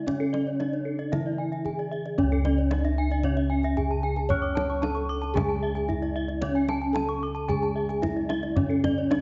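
Shimmering and hypnotic, this short cut from a longer Balinese gamelan piece moves in a straight four, with a mellow, soft bronze metallophone carrying the melody while the paired tuning of several metallophones produces shimmering beats. A lower metallophone struck with a bright, airy horn mallet plays accompaniment, two more spin arpeggios above, one struck with a wooden mallet and the other a bright horn-mallet part sitting mid-forward, and soft, round bossed gongs sound the bass. A deep, close and dry kendang enters at 0.1 seconds, all set in a moderate recital hall reverb with a gently darkened top end.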